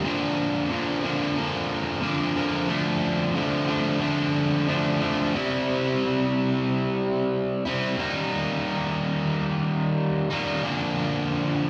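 Rock at 91 BPM in a straight 4/4, this short cut from a longer piece carries a cathartic, anthemic mood. A single distorted electric guitar plays throughout, from 0.0 to 11.7 seconds, bright and picked, double-tracked and placed up front in the mix. Its range runs from Bb2 to E4, and the tuning sits slightly low at A4 = 436 Hz. The harmony moves from Bb to Dm, then shifts at 5.3 seconds into a second section over C and Eb before returning to Bb. A wet stone room reverb with a 1.1-second decay surrounds the guitar, giving the sense of a band playing live together in one space.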